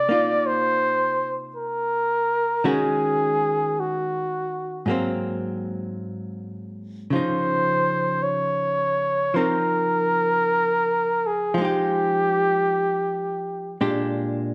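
Set in a dark production bathed in moderate large-studio reverb, this intimate, late-night swing jazz fragment features a warm, soft-attacked flugelhorn singing the solo melody up front with vibrato and scooped notes, while a clean, compressed hollow-body archtop guitar, picked and amplified, accompanies through chords such as Cm11, Dbmaj9 and Fm9, carrying on by itself after the horn stops at 13.8 seconds.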